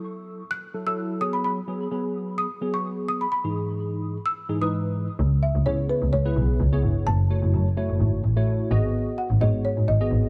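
A woody, round marimba played with soft mallets carries the melody through dub echo over a clean tine electric piano with analog chorus and a low-pass filter, as a filter sweep on the piano shapes a build-up in this bittersweet, driving dance-pop piece in C# minor at 128 BPM. At 5.2 seconds the drop arrives and a bowed double bass enters up front with an intense, clear tone and light vibrato, moving through chords such as C#m7, F#m7 and G#m7. The dark production sits in a small room with light reverb.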